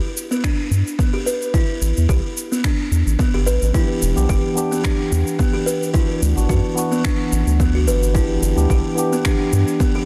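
A buzzing, woody kalimba opens this hypnotic, meditative organic downtempo piece with delayed arpeggios, joined almost at once by overdriven electronic cabasa and finger snaps, a punchy up-front electronic kick and a round, deep analog bass with sidechain pumping, before a clean tine electric piano, also pumping and delayed, enters at 3.7 s over a gently swung groove, all set in light reverb within a dense, heavily limited modern master.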